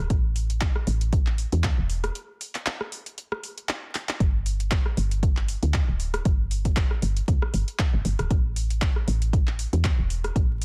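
A woody, round FM bass opens this late-night deep house excerpt, dark and soft with a fast attack that quickly decays, sitting up front and pumping against the sidechain. An electronic kick drum joins almost at once, a deep, layered thump with tape-warm character and a small-room ambience, placed prominently in the mix. Around it, a deep house kit adds handclaps, metallic hi-hats and a rim click over a swung sixteenth-note feel, with soft clipping giving the snare a slight grit. A break arrives at 2.2 seconds and runs until 4.2 seconds, with a drum fill at 3.9 seconds leading back into the groove. The master is dense and heavily limited, dry rather than reverberant, with a layer of vinyl crackle adding a dusty patina.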